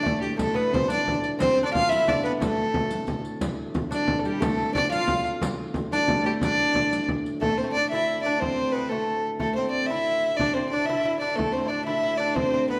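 A mysterious, driving medieval dance in D dorian at 120 BPM in a straight 6/8, cut from a longer piece, with a dark, woody bowed fiddle carrying the melody up front over a delicate fingerpicked lute with gut double strings and a nasal, ringing fretted viola da gamba with a soft attack and airy bow. A reedy, breathing pedal harmonium holds a low drone in the background, while a deep frame drum played with hard hands drives the pulse and a riq with bright, band-limited jingles joins it until 7.3 seconds. The ensemble sits in a wet scoring-stage reverb, and the music moves into a new section at 7.4 seconds.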